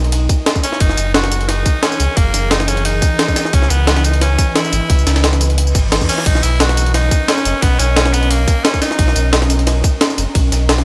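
A dry, up-front mix carries this lush, warm liquid drum and bass excerpt, built on two gritty, pitched-up breakbeat sampler kits (one forward with crash, hi-hat, ride, high-tuned snare and tambourine, the other a tape-warm layer of high-passed ride and snare in the background), a tight, layered electronic kick and a deep, full sine sub bass with octave. Behind them, a glassy, ethereal FM pad holds dark sustained chords with ensemble chorus, built-in reverb and sidechain pumping, moving from Bmaj7 through F#9 and C#m9 back to Bmaj7. A raspy, forceful tenor saxophone solo with vibrato and delay enters at 0.6 seconds and plays until 9.5 seconds, and a quiet reverse cymbal sweeps in at 5.7 seconds.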